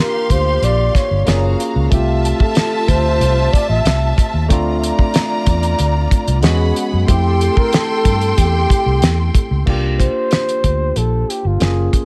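Lush 1970s-style soul at 93 BPM in F major, warm and romantic, where a breathy, whispered flugelhorn with tape echo carries the melody over a bowed, vibrato-rich string section that drops out at 9.6 s, a barky, lightly overdriven tine electric piano, a round, foam-muted fingered electric bass and a cloth-damped, thuddy drum kit with a fat snare and dark cymbals, all set in studio reverb as rich major-seventh and ninth chords pass by in this cut from a longer piece.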